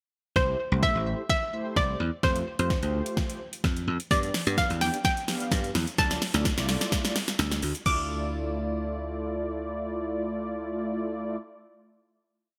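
A bright, 1980s-style digital production with light reverb frames this short, energetic dance-pop piece in D dorian, moving at 128 BPM in a straight 4/4 with a confident, up-front punch. A smooth, electronic R&B drum kit drives a four-on-the-floor beat, with a soft kick, fat snare under gated reverb, metallic hats, crash and shaker, re-recorded in a large room, and the whole passage builds as a drum fill. Beneath it, a dry, foam-muted thumbed slap bass plays a punchy syncopated figure with sidechain pumping, while mellow synth brass, round and dark with detuned sawtooth tone, chorus, vibrato and a filter sweep, holds syncopated drop-2 chords that also pump. On top, a hollow, bouncy square-wave pluck with ring modulation, chorus and digital delay carries a motif-based melody over chords moving from C6 through Fadd9 and G to Dmadd9. A very quiet, grainy tube shaker adds sixteenths from 4.1 seconds, and once the drums and shaker stop around 8 seconds, the pluck, brass and bass close on a final chord until 11.4 seconds.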